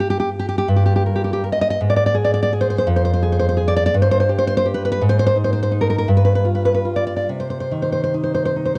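Passionate and melancholic, this short romantic excerpt for solo classical guitar drifts through a slow 6/8 with uneven, rubato beats that push and pull freely. The nylon-string guitar plays alone throughout its 8.8 seconds, fingerpicked and up front, with a full-bodied, deep classical tone from fresh strings and the occasional finger squeak. Its range spans from F2 up to Eb5, and the harmony moves through Gm, Fm6, Ab5 and G7 before settling on Cm at 7.3 seconds, with bare moments between the chords. A moderate spring reverb gives the instrument a lingering halo. The sound carries the character of worn, warbling old cassette tape, its pitch drifting and wavering in a way that lends the passage a faded, nostalgic feel.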